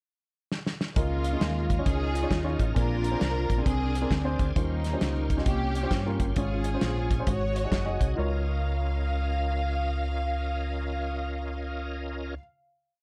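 A swung, driving two-beat praise groove at 133 BPM in 4/4 sets this short, jubilant uptempo gospel piece in motion, with the soul drum kit's tight kick, medium-tuned snare and hi-hat sitting up front in a small-room sound, its top rolled off, and a quick fill at 0.5 seconds leading from the pickup into the band. At 1 second the fingered electric bass enters round and punchy, walking and running with chromatic approach notes beneath Db major chords that move from Db69 through Bb9 and Eb13 to an Ab7sus4. Above it, a lush studio string section carries a smooth, motif-based melody of song-like phrases with even vibrato, while a mellow, intimate baby grand piano adds rhythmic, closely voiced chords with audible action noise and short sustain. A full, shouting tonewheel organ holds sustained pad chords through a slow rotary speaker and chorus vibrato. The drums stop at 8.1 seconds, leaving the rest of the band to ring out on a final Db69 chord from 8.2 seconds, all in a dry, dark production with little reverb.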